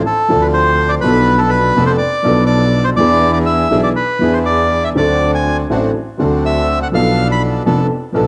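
A reedy, bright bandoneon sits close and up front with a dramatic, passionate melody in this rubato tango excerpt, while a second, darker bandoneon adds dry stabs over a woody, slightly detuned, boxy upright piano and a focused, bowed double bass played with vibrato; the piano and both bandoneons carry a cassette tape coloring, and the whole ensemble is touched by spring reverb and small room ambience.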